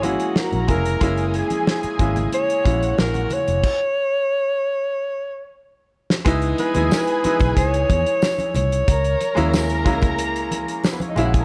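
The recording is dry, with little reverb, in a lush 1970s-style soul groove at 92 BPM in a straight 4/4, silky and cinematic in mood, cut from a longer piece. A breathy alto saxophone carries the melody up front, mellow and subtoned with vibrato, scooped notes and a smooth jazz-style top. Beneath it, a veiled, con sordino string section bows a distant second line, while a bright, slightly worn grand piano plays accompaniment and a foam-muted fingered electric bass adds a round, amped low end. The acoustic drum kit has a fat snare, tight kick and dark cymbals, with congas sitting very quietly in a live room. The band hits a stop at 3.6 seconds, a drum fill arrives at 5.6 seconds to lead from F#9 into C#m9, and a jingly tambourine joins in the background at 6.9 seconds.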